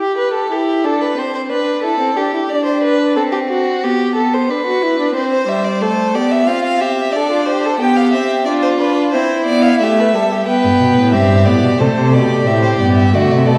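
Joyful and elegant, this baroque-style string quartet fugue at 90 BPM, cut from a longer piece, opens with a warm, expressive violin gliding with portamento over a rich, smooth viola, brings in a second violin with vibrato on the melody at 5.3 s, and adds a close, soft-attacked cello on the bass at 10.6 s, heard in the wet reverb of a church or concert hall beneath vinyl crackle.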